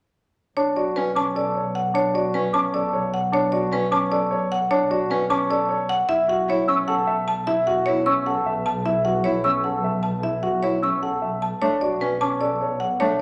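In a straight 7/8 pulse at 304 BPM counted in eighths, this fragment of meditative yet urgent minimalist classical pattern music in B minor sets a bright, woody marimba struck with hard mallets on the melody up front, a polished grand piano with long sustain rolling through arpeggios, an airy, hollow flute with vibrato tracing high arpeggios in the background, a focused solo bowed cello accompanying, and a distant bowed double bass section holding a low B with expressive portamento, the harmony moving from Bm7 to A/B at 6.1 seconds and back within a large, wet studio reverb.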